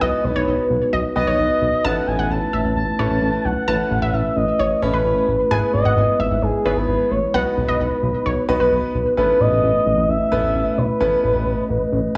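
Pop excerpt at 131 BPM in A lydian with a nostalgic, bright mood, where an expressive, smooth synth lead with chorus and vibrato carries the melody up front over a fat, saturated analog bass, brilliant short-sustain grand piano accompaniment and glassy, ethereal glass harmonica chords, while a warbling, lo-fi dusty pluck with chorus and digital delay plays a second line until 8.7 s, all set in a moderate scoring-stage reverb as the chords move from B through Aadd9, E/G# and back.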